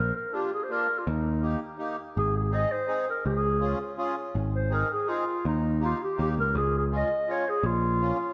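A moderate scoring-stage reverb surrounds this jolly, festive alpine dance-band cut from a longer piece in 3/4, where a dark, soft-attacked clarinet in classical style carries the melody up front yet sounds distant and roomy, touched with delay, a growly, direct and amped picked electric bass holds the low end, and a reedy, airy accordion with slow beating enters at 0.3 s to fill the accompaniment, with a brief break at 1.8 s before the second section begins at 2.2 s.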